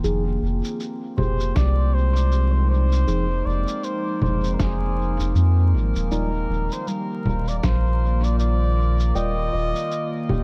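A warbling, nostalgic pad, ringing handpan arpeggios in dub echo, a very quiet tine electric piano, a deep, round sub bass up front, and muffled, pitched-down shaker, congas and snare open this meditative, spacious ambient dub excerpt in F dorian at 79 BPM with a swung feel. Glassy drifting overtones arrive at 1.0 seconds, a veiled cup-muted trumpet melody follows at 1.2 seconds, and a thumpy kick enters at 1.6 seconds, as the music moves from Fm7 to Ebmaj9 amid vinyl crackle and digital ambience.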